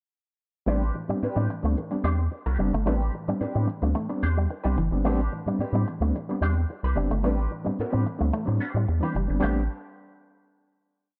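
A rubbery, bouncy square-wave bass sits up front in this short, sly funk piece, playing a syncopated riff anchored on the downbeat with muted ghost notes. Around it, a mellow electric guitar scratches out sixteenth-note rhythm through a wah and analog chorus, a twangy guitar with an envelope filter picks a muted single-note riff, and a reedy electric piano adds percussive two-handed stabs with fast tremolo. The groove runs from 0.7 seconds until a final chord rings out at 9.4 seconds, all set in a dark production with light reverb and digital ambience.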